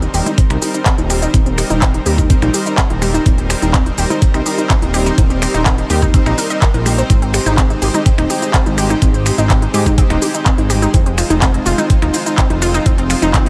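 Set in light reverb and digital ambience, this hopeful, uplifting progressive house excerpt in Eb major moves at 125 BPM in a straight 4/4. A lush, bright supersaw pad holds sustained chords from Eb6 through Abmaj7 at 7.1 seconds to Fm7 at 10.9 seconds, while a punchy, detuned unison pluck spins arpeggios through digital delay and a filter sweep, and a fat, tube-saturated analog bass sits underneath, all three pumping with the sidechain. An up-front, knocking electronic kick enters at 0.4 seconds beneath a tape-toned pop kit of cabasa, finger snaps, handclaps and crisp hats, with very quiet congas tucked in below.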